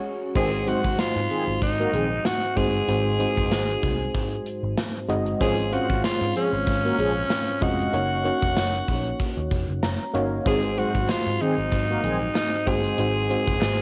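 A raspy, gritty alto saxophone carries the melody up front in this uplifting, romantic 1980s-style pop excerpt, its forceful pop phrasing marked by scooped notes and a light vibrato. It arrives at 0.4 seconds, after an opening drum fill and band accent, over a gently swung groove. A warbling FM electric piano with tremolo supplies vintage, mellow accompaniment throughout and plays a fill at 9.5 seconds. Detuned synth brass with chorus punctuates the Ab7, Dbmaj7/Ab and Gb6 changes with round, dark stabs. A foam-muted picked bass sits low and punchy beneath a gated 80s drum kit with bright cymbals, tambourine, a punchy kick and a tape-tinged stone-room sound. A very quiet, hollow group handclap joins at 11.1 seconds, and the whole piece sits in a lush hall reverb with the soft grain of a home cassette recording.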